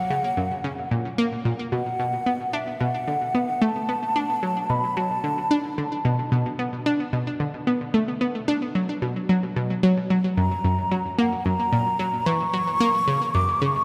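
An airy, hollow concert flute opens this expansive, hypnotic ambient passage with a delayed, vibrato-tinged melody, joined at once by an up-front analog pluck riff that is round, detuned and edged with ring modulation, chorus and echoing delay. Over a harmony that moves from F# to Bm7 and back, the flute falls silent at 5.8 seconds and returns at 10.4 seconds while the bright pluck keeps cycling throughout. Everything sits in a vast cathedral reverb with a long tail, and the piece is cut from a longer work.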